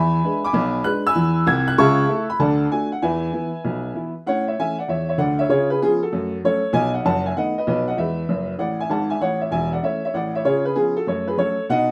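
Exuberant and playful, this short cut from a longer stride piano jazz piece swings at 194 BPM in A major, with a clear, woody upright piano playing alone from the deep bass up into the high treble. The boxy, up-front piano tone carries long sustain in a moderate studio reverb, moving from an E7 opening through dominant changes like C#7 and B7 to F#m. A brief piano fill at 8.3 seconds adds a flourish before the harmony returns to A.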